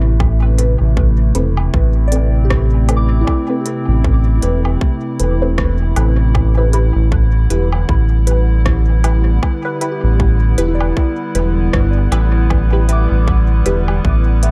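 A dark, hazy digital ambience wraps this ambient dub piece, a deep groove in 4/4 with a light swing that moves from Amadd9 to G6 at 6.4 seconds. A round, up-front analog bass with tube saturation plays alongside a tight, overdriven electronic kick and a crisp, overdriven kit of hi-hat, rim click and woodblock sent into dub echo, both re-recorded in a small room. Above them a warbling, nostalgic tape-like pad holds detuned chords in chorus and reverb, muted, nasal chord stabs pass through phaser, cassette tape and dub echo, and a soft, pure FM bell plays arpeggios in the background.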